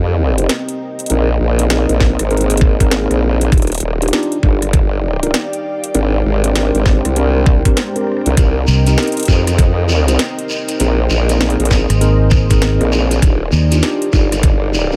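A swung 99 BPM glitch hop groove in 4/4 drives this funky, playful excerpt, built on a tape-warm drum and bass kit with cracking snare, rim click and metallic hats, joined at 2.0 seconds by a knocking, up-front electronic kick. An overdriven, chorused formant-sweep wobble bass holds the low end throughout, while a mellow tine electric piano stabs through dub echo and sidechain pumping, and a fingered electric bass adds a direct, warm line between 8.7 and 13.8 seconds. Around them, a deep, moody detuned analog pad pumps in the background under a very quiet, ethereal airy pad, and a grainy, distant shekere enters at 8.4 seconds over chords moving from Cm7 through Bb9sus4, Ebmaj9 and Abmaj9#11.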